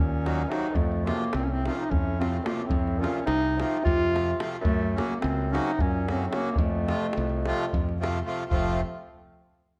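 A restless 7/8 pulse at 216 eighth-notes per minute drives this fiery Balkan wedding-band passage in F phrygian dominant, cut from a longer piece and played with a straight feel. A mellow clarinet carries the melody up front, its smooth top and classical phrasing set against a bassoon second line that sounds clear and more distant, roomy, with a light vibrato. A bright, direct fingered electric bass anchors the low end from the start, and a reedy single-reed accordion with dry tuning joins at 0.2 seconds to fill in the harmony. A tight, close davul enters at 0.3 seconds, giving the odd-metre groove its punch. The chords move from Ebm to F, then to Gb and back to F. A moderate recital-hall reverb surrounds the dark, warm production, and a new section begins just before the end at 8.5 seconds.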